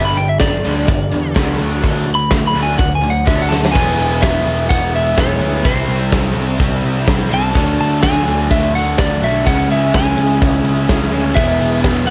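Lightly reverberant small-room sound frames this sunny, swaggering classic rock excerpt, led by a warm, slightly broken-up slide guitar played with fingerpicks that solos over the opening until 3.7 seconds. A big, up-front acoustic drum kit with a fat snare and punchy kick, a drum fill from 3.3 seconds, a distant jingly tambourine and an amped picked bass drive things along. Beneath them sit riffs from a lo-fi overdriven garage guitar and a bright distorted guitar, a soft flute-like tonewheel organ through a rotary speaker, and a very quiet double-tracked crunchy guitar that joins at 3.7 seconds.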